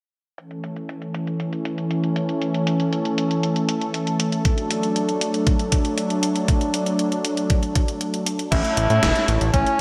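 Nostalgic and dreamy, this synthwave fragment opens on a smooth, warbling analog pad with chorus over a gated 80s drum machine of snare, hi-hat and crash, whose drums carry a filter sweep until a short break at 8.0 s, while an overdriven, knocking electronic kick joins at 4.5 s. At 8.5 s a jazz-style tenor saxophone takes the melody with vibrato and scooped notes, joined by a fat, detuned sawtooth bass up front and a dark, round FM electric piano playing stabs in the background with chorus and phaser. The bright 1980s-style digital production sits in a lush hall reverb.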